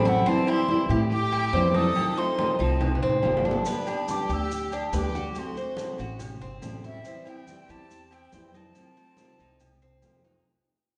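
Latin Cuban son and guajira with a sunny feel, cut from a longer piece and fading out throughout, set in a reverberant concert hall with a dulled top end. A breathy, hollow jazz flute carries the melody over a floating, sul tasto violin section, joined by a fingerpicked flamenco guitar, metallic picked tres arpeggios on doubled strings and a woody, growly pizzicato upright bass that sits up front. Distant congas played with soft hands and ringing agogo bells and timbales drive the percussion, a drum fill arrives at 2.8 s, and grainy maracas join at 3.7 s over chords moving from Am7 through F7, G and D7.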